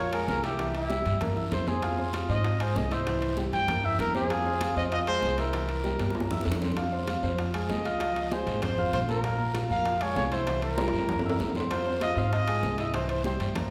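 Salsa with a danceable, passionate drive, this short excerpt sets a mellow, lightly vibrato-touched trumpet melody with scooped notes up front over a clear, intimate concert grand piano with audible action noise, a woody, thumpy pizzicato upright bass on gut strings, ringing congas and metal-shell timbales in the background, very quiet round bongos and a raspy guiro, with drum fills at 5.8 and 10.8 seconds and a church-like hall reverb around it all.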